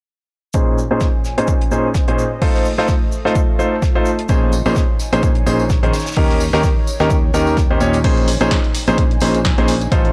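Piano house at 128 BPM in Bb dorian, bittersweet and energetic, where a clear, intimate baby grand riff with audible action noise, sidechain pumping, analog delay and a filter sweep sits up front over a punchy electronic kick, a cloth-damped, saturated drum kit with hi-hat, shaker and snare, and a very quiet warbling, nostalgic tape-like pad, with a bright, growly fingered bass and a background tambourine joining at 4.3 seconds and a punchy analog drum machine with crash, hi-hat and snare arriving at 8.0 seconds as the kit drops out, all in a dry, gritty cassette-tape sound over Bbm11, F7/A and Eb7 chords.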